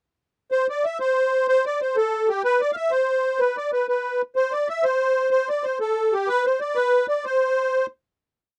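This is a Celtic folk jig in C major, a short, complete piece in 6/8 at 124 BPM with a rollicking, bright mood and a straight feel. A lone musette accordion carries the whole tune, playing from 0.5 to 7.9 seconds in a range from G4 to F5. Its musette tuning gives the reeds a shimmering quality, yet the tone stays dark and smooth, sitting up front in the sound. The melody is built from motifs arranged in period phrases, running through a single section before a final hit closes the piece at 8.2 seconds. The recording is dry and close, in a 1970s studio style with little reverb, so the reedy instrument is heard plainly and intimately.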